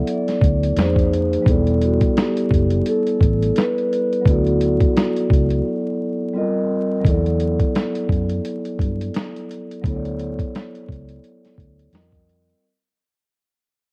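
Reflective and hazy, this lo-fi hip hop passage moves at 86 BPM in 4/4 with a light swing on the sixteenths, and it is cut from a longer piece. Two soft-mallet vibraphones open the passage: one plays a mellow, close-miked melody up front that stops at 5.6 seconds, while the other, darker and smooth, holds the accompaniment through to the end, both filtered and tinted by cassette tape. A dusty sampler-style drum kit sits up front with a thumpy kick, medium-tuned snare and hi-hat, its gritty, compressed sound pushed further by overdrive. Underneath, a vintage foam-muted electric bass adds round, amped low notes. Chords such as Bm7, Fm7, Em11 and E9sus4 drift by in a small room with light reverb, vinyl crackle and the feel of a home cassette recording. After a break at 5.6 seconds, the second section fades out from 7.0 seconds to the close.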